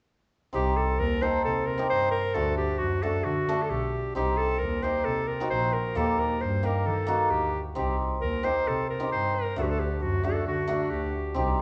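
This short excerpt of klezmer opens at 0.5 seconds with a clarinet, hammered dulcimer and double bass all starting together, playing through to 11.6 seconds in a soulful, festive mood. At 133 BPM in a straight 4/4 and a C dorian sharp-four mode, the clarinet carries the melody in a classical style, its warm solo voice up front. The hammered dulcimer accompanies with a bright, shimmering, ringing acoustic sound, also placed close to the listener. Beneath them a single bowed double bass plays the bass line with a rich, reedy gut-string tone, light vibrato and an airy bow in a period manner. The chords move between Cm, D and Eb, and the trio sounds like a band playing live in one room, bathed in a large studio reverb with a soft, rolled-off top end.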